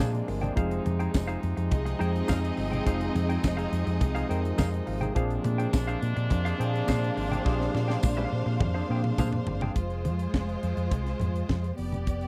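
This is a dry, close 1970s-style studio recording with little reverb, a sultry, driving disco excerpt in F dorian at 104 BPM in a straight 4/4. Up front, a tight funk drum kit with a high-tuned snare and tight kick sits beside a dark, round, punchy hollow-body short-scale bass, fingered and amped. A worn, slightly out-of-tune tine electric piano plays mellow accompaniment through its built-in speakers and adds short fills. A clean, compressed semi-hollow guitar also plays accompaniment, while a muted, stopped French horn section holds nasal, metallic chords with light vibrato. A clear, lush string section carries a second line with a smooth top. Low-tuned congas with thick skins sit very quietly in the mix, and a jingly tambourine enters at 1.1 s. The harmony moves between Bb9 and Fm7, and a drum fill starting at 7.5 s leads to a closing Fm at 9.8 s, where the electric piano, guitar and horns drop away and the strings, bass, drums and congas carry on.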